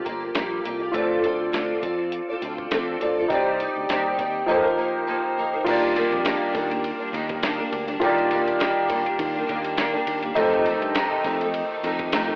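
A woody, up-front upright piano with cassette-tape colour accompanies this lonely, mellow indie bedroom-pop excerpt alongside a picked parlour acoustic guitar with fresh strings under chorus and vibrato, a dark, round fingered electric bass, and a dusty, compressed sampler-style drum kit with a thumpy kick, medium-tuned snare, hi-hat, ride and crash, all in a dry, gritty telephone-like sound with light reverb and a gently swung sixteenth feel.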